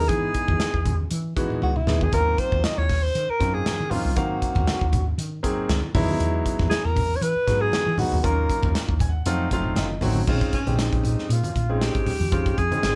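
A breathy, mellow alto saxophone carries the melody up front with vibrato and scooped notes, stepping out into a solo at 10.3 seconds in this funky, slick electric jazz fusion excerpt at 118 BPM in Eb dorian with a lightly swung sixteenth feel. Beneath it, a woody, round fretless bass anchors the groove, a clear grand piano with audible action noise comps and adds a fill from 8.7 seconds, and a modern drum kit with a punchy kick and bright cymbals drops a fill at 1.6 seconds. Low-tuned congas sit distant in the background, all captured as a band playing live in one room with light reverb.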